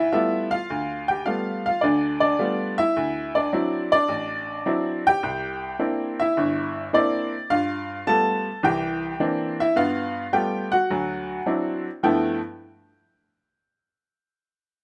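A brilliant, woody upright piano sits up front in this sophisticated, warm solo jazz passage, cut from a longer piece, swinging at 106 BPM in 4/4 through G mixolydian over rich ninth chords like G9, D9 and C9 in light reverb, ranging from G1 to A5 before landing on a G13 at 12.0 seconds and ringing until 12.4 seconds.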